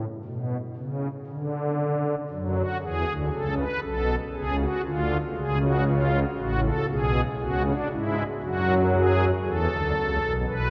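A pipe organ on its string celeste stops carries this solemn, serious baroque-style three-part fugue, its soft, shimmering romantic voicing sitting up front and reaching from deep bass notes into the middle register. The organ plays alone at a steady, straight pulse, opening unharmonised before the harmony settles in at 2.3 s and moves through a sequence of minor and major chords. A cathedral reverb with a long tail bathes the sound, and the dark production carries some lossy compression artefacts in this short cut from a longer piece.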